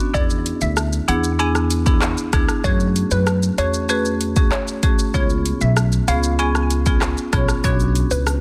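An electronic afro-pop drum kit (deep kick, metallic hats, handclaps, rim click, shaker and soft clipping on the snare) opens this hypnotic, sultry dancehall excerpt alongside a woody, growly pizzicato upright bass, a mid-forward marimba struck with medium hard mallets, and a glassy, nasal wavetable pluck melody coloured by chorus and tape echo, all moving through E7, F#madd9, C#7 and Bmadd9 in a dense, heavily limited small-room mix, until a ringing egg shaker slips in behind them at 7.6 seconds.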